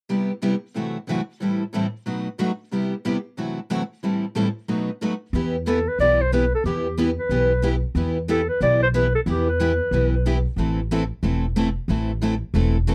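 Acoustic string swing in the jazz manouche style, this fiery yet bittersweet fragment in E minor moves at a brisk 183 BPM, with two picked steel-string acoustic guitars comping from the start: one bright with fresh strings and audible finger squeak, the other warmer and quieter. A woody pizzicato upright bass joins at 5.3 seconds as the harmony settles onto E minor, and a mellow clarinet enters at 5.7 seconds with a soft-attack subtone and gentle vibrato in a vintage jazz voice. The sound is dry and close, in the manner of a 1970s studio with light reverb, placing the bass, clarinet and brighter guitar up front.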